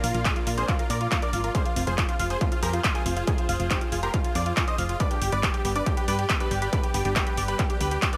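This bittersweet, emotional uplifting trance fragment at 139 BPM in 4/4 opens with an overdriven techno kit of handclaps and hi-hat in a small room, a punchy, dark FM bass, a huge detuned supersaw lead carrying the melody with vibrato and digital delay, a clear grand piano playing a high second line, a lush slow-attack unison pad sustaining chords in the background, and tight sequenced arpeggios colored by chorus and phaser. A distorted, up-front electronic kick enters at 0.3 s to drive it all, with the bass, lead, piano, pad and arpeggios pumping to the sidechain over a Bb, Fm and G progression.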